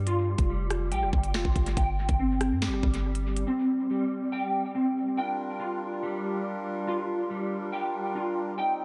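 A dark, clean electric guitar plays chorused, low-passed arpeggios soaked in dub echo across this ominous half-time drill excerpt, while a punchy 808-style bass and a gritty 12-bit drill kit of knocking kick, sharp snare, crisp hats, rim clicks and finger snaps hit up front only until about 3.5 seconds, and a reedy, breathing harmonium enters with dry sustained chords at 5.2 seconds in an echo-heavy mix with light reverb.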